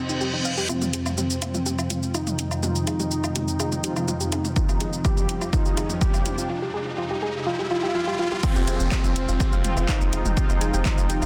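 This dense, heavily limited modern master sits in light digital ambience, framing a hypnotic, cinematic slice of melodic techno at 124 BPM in F minor, cut from a longer piece. A reverse cymbal opens the passage over an Ebadd9/F chord before settling on Fmadd9 at 0.7 seconds. From there a build-up runs to 8.4 seconds, with a riser and filter sweeps on the nasal, warbling unison lead, the lush detuned pad and the soft, round pluck arpeggios, all three pumping against the sidechain while the lead and pluck trail dub echo. A layered, overdriven deep house kit with metallic hats, handclaps, shaker, toms and woodblock carries a drum fill, and fat, brassy analog stabs hover in the background along with a tense, swarming granular drone. A punchy, overdriven electronic kick pushes up front from 4.6 seconds, and after a swell the drop lands at 8.4 seconds, where a deep, round analog bass on F1 soon enters to anchor the groove.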